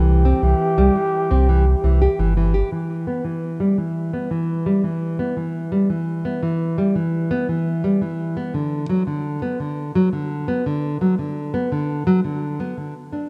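A dark, warm production with a moderate plate reverb frames this wistful, delicate folktronica excerpt at 85 BPM in E minor. A breathy, whispered flugelhorn with light vibrato, scooped notes and digital delay sings over a round sine sub bass and thumb-plucked nylon-string guitar arpeggios on a C chord, and both horn and bass fall away by 2.6 seconds. The full-bodied guitar, with audible finger squeak, low-pass filtering and digital delay, carries on through Em and Bm chords until 13.3 seconds.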